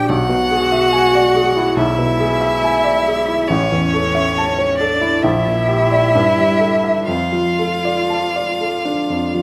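A rubato 4/4 pulse sets the flexible pace of this slow, elegiac classical piano trio movement, heard as a short fragment of a longer piece with a yearning mood throughout its 9.4 seconds. A smooth, up-front violin carries the melody evenly with vibrato, while a focused cello sings a second line beneath it and a warm baby grand piano supplies the accompaniment across a broad register. The moderate reverb of a recital hall surrounds the close-sounding strings as the harmony moves from E7/B through A and Gm/Bb to Dm/F.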